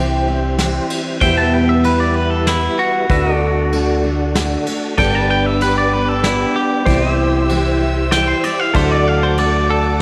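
Honky-tonk and classic country in an easygoing, down-home 3/4 at 96 BPM, where a bright, twangy electric guitar takes a clean, up-front solo through tape echo over a full-bodied jumbo acoustic guitar, a round, dark fingered bass, a smooth tonewheel organ turning on a slow rotary speaker, and soft pedal steel chords in the background, with a brush drum kit of dark cymbals and a tight kick coming in at 0.6 seconds and a lush bowed violin section joining at 5.0 seconds as the chords move through C, Em, D and G in a moderate echo-chamber reverb.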